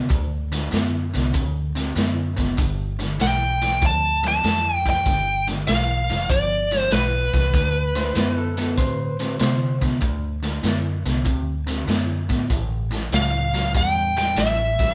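Smooth, overdriven lead guitar sits up front in this soulful, gritty electric blues shuffle, singing its picked melody from 3.2 to 9.4 seconds and returning at 13.1 seconds. Underneath, at 97 BPM with a swung 4/4 feel in D mixolydian, a biting overdriven guitar holds down the low riff throughout. A dark, round, foam-muted fingered bass and a crunchy breakbeat kit, saturated with a rolled-off top, tight kick and medium-tuned snare, drive the groove from the start. A lo-fi, slightly broken-up guitar through a small old amp adds a quiet second line, appearing briefly at the opening and again from 8.0 seconds. The chords move from D7 to G7, back to D7, and land on A7 near the end of this short cut from a longer piece, all heard as a band playing live in one room with moderate studio reverb.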